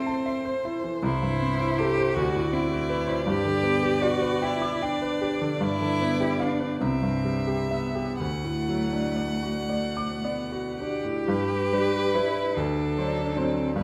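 A six-eight pulse moves slowly and freely here, stretching and relaxing with rubato through this short passage cut from a longer classical piece. It is a serene, tender romantic movement for piano trio, heard in the generous reverb of a recital hall. The bowed violin carries the melody with a clear, focused tone, vibrato and a smooth top. Beneath it, a single cello sings a second line with a close, intimate presence and its own vibrato. The up-front concert grand supplies the accompaniment, its vintage character and deep bass giving the trio a rounded foundation. Harmonies drift from A minor through D and G toward C before a new section opens at 11.3 s, the piece reaching a D7 chord as the passage ends at 13.8 s.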